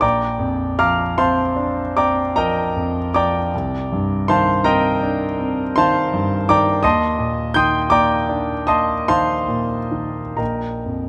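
A clear concert grand piano, intimate and up front with deep bass, long sustain and audible action noise, plays this dreamy, hazy impressionist classical solo in a rubato 9/8, drifting through Bbadd9, Cm11 and Ebmaj7 before settling on Bb5 near 10.4 seconds, caught by close, detailed microphones within a moderate concert hall reverb in a short excerpt from a longer piece.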